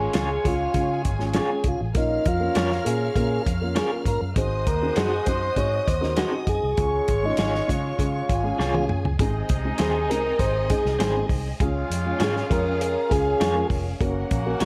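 A mellow tonewheel organ carries the melody from the first moment of this joyful, danceable 1960s-style soul excerpt in Db major at 100 BPM. It has key click, light overdrive, a slow rotary speaker and plate reverb, and is backed by a lush, distant bowed violin section, a vintage horn section with light vibrato, a boxy, woody upright piano and a round, punchy, foam-muted electric bass. A bright, twangy guitar through a small old amp adds tremolo-tinged stabs alongside a dry, muffled, up-front soul drum kit, whose fill at 8.6 s leads into a new section at 9.2 s as the chords move from Db through Bbm and Ab7 toward Gb.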